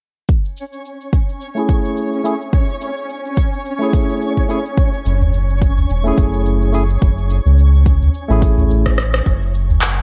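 Meditative and warm, this brief organic downtempo cut swings gently over a single F# minor seventh chord, with a deep, tape-softened electronic kick up front, electronic shaker, rim click and handclaps sounding as if re-recorded in a large room, a twinkling granular texture with an octave-up shimmer, and a bright, barky tine electric piano that pumps through tape echo under a filter sweep, before a round, dark analog bass and a close udu set further back join at about 5.1 seconds and a drum fill closes at 9.3 seconds.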